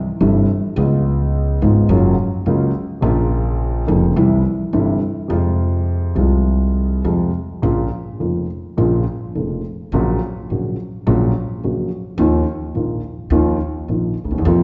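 Tango in a melancholic, tense mood, played rubato and cut from a longer piece. A dark, boxy concert grand piano sits up front with a mellow, deep bass register, carrying the accompaniment, while a woody pizzicato upright bass anchors the low end; both play from 0.2 s to 14.6 s. The pair sits in a wet, church-like reverberant space with a dulled top end, and the harmony shifts to a new tonal center at 7.6 s.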